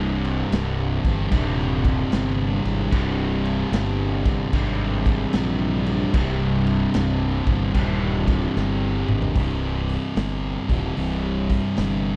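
Two thick fuzz guitars, an overdriven electric guitar and a fuzz-laden fingered bass open together on a low, brooding riff in this stoner and doom metal excerpt, with a raw garage drum kit joining at 0.2 s. The swung eighth notes lend the slow groove a hypnotic sway. The growly, punchy bass sits up front with a bright, amped edge, while the dark, distorted fuzz guitars and the double-tracked overdriven guitar hang farther back. The kit brings a punchy kick, a medium-tuned snare, hi-hat, toms and crash, its sound saturated and gritty with a rolled-off top. A drum fill marks the point where the overdriven guitar stops at 9.4 s, and the fuzz guitars, bass and drums carry on into a new section, the kit falling away just before the cut at 12.2 s. The dry, close production has a 1970s studio character.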